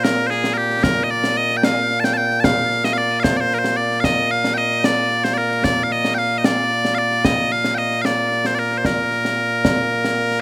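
Scottish traditional pipe music in 6/8 at 75 BPM (dotted quarters), this ceremonial, proud passage in Bb major is cut from a longer piece and runs 10.4 seconds. Loud solo bagpipes carry the continuous melody, piercing and up front, ranging from Bb2 to A5 with a slapback echo. An acoustic concert snare and bass drum with bright cymbals play beneath them throughout, all captured dry in the open air.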